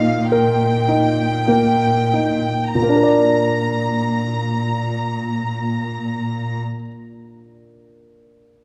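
A clear, up-front concert grand piano carries the lyrical melody, with deep bass and short sustain, in this passionate, rubato romantic fragment for piano and orchestra in 3/4. A focused chamber violin section sings high with vibrato, and a lush, even symphonic cello section holds the bass. The music slows over the opening 2.8 seconds, the strings stop at 6.6 seconds, and the piano plays on alone until 8.6 seconds, set in a dark production with moderate scoring-stage reverb.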